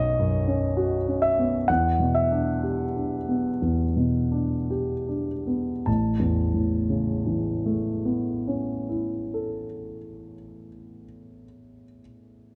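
A solo concert grand piano sits up front in a dark, warm production with light reverb, its deep bass and short sustain giving each chord a close, rounded presence. This tender, peaceful fragment of neoclassical minimalist piano, cut from a longer piece, moves in 4/4 with a rubato feel between 50 and 71 BPM, centred in A mixolydian. The piano spans A1 to A5 across its 12.6 seconds, opening on Badd9 before shifting to Em7 at 1.7 seconds while the tempo slows through the first phrase. At 5.9 seconds a new section begins on Aadd9, settling the music onto its home chord. The restrained harmony and unhurried pacing give the passage a quiet, reflective calm.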